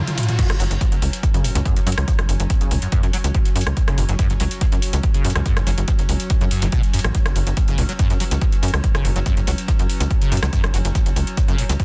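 Hypnotic and relentless, this driving peak-time techno cut, taken from a longer piece, opens with a brief drum fill before the drop lands at 0.4 seconds, when the punchy, up-front electronic kick enters and holds to the end. Beneath it, a tight, nasal sequencer bass with a fast, plucked filter attack sits forward in the mix, pumping against the kick through sidechain compression. A squelchy, resonant acid bass riff runs in the background, its sawtooth tone shaped by filter sweeps and thickened with ensemble chorus and digital delay. Further back, a metallic, inharmonic drone built from FM and ring modulation adds an eerie, slow-blooming sustain with chorus and its own reverb. The layered techno drum kit brings metallic hats, rim clicks, toms and crash cymbals, with soft clipping on the snare, all in a dry, dense and heavily limited modern master.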